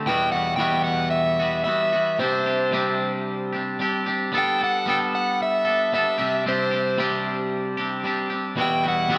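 Soaked in a lush, dreamy hall reverb, this carefree, jangly rock excerpt at 113 BPM in 4/4, tuned to A4 = 437 Hz, sets an up-front, clean, scooped and twangy picked electric guitar riff against an overdriven electric guitar melody coloured by tape echo, moving through Emadd9, Csus2 and Gadd9 from 0.1 to 9.2 seconds.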